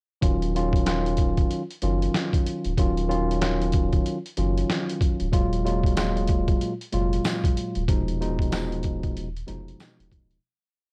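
A gritty, pitched-down sampler drum kit sits up front with a thumpy kick, a snare layered with rim click and swung sixteenth-note hi-hats, setting a tough, reflective boom-bap groove at 94 BPM in Eb minor. A clean tine electric piano plays chopped chords repeated like a sampled loop, moving from Ebm9 to Gbmaj9/Eb and then Fm7b5/Eb, over a deep, round sub bass line with chromatic approach notes. A jingly tambourine joins in the background on the off-beats at 6.0 seconds, and the whole piece has a dry cassette-tape grit before fading out from 7.9 seconds.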